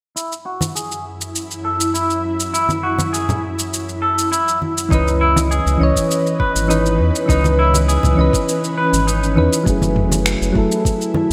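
Sunset chillout with a relaxed, smooth mood: a clean, twangy electric guitar plays arpeggios through harmonic tremolo, delay and a filter sweep over an ethereal, detuned pad, while a tape-warm deep house kit adds finger snaps, shaker and toms and low-tuned, close, dry congas ring beneath. At 4.9 s, mellow electric-piano-like synth keys with chorus, a round, deep analog bass and a soft electronic kick arrive; the guitar stops at 9.3 s, and at 9.7 s a filter sweep moves onto the keys, all set in a wet plate reverb with a bright 1980s-style digital production.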